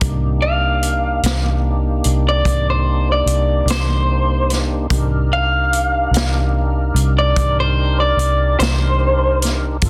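Slow blues in a mournful, smoky 12/8 mood, set over a single Cm9 chord: a fat, lightly overdriven tonewheel organ holds sustained chords with key click, chorus vibrato and slow rotary speaker, a dark, foam-muted fingered electric bass sits round and up front, a vintage drum kit plays hi-hat, punchy kick and medium-tuned snare with a rolled-off top in a natural studio room, and from 0.4 seconds an electric guitar through a small old amp carries the slightly broken-up, picked, lo-fi melody with digital delay, all under light studio reverb and a dense, heavily limited modern master in this brief cut from a longer piece.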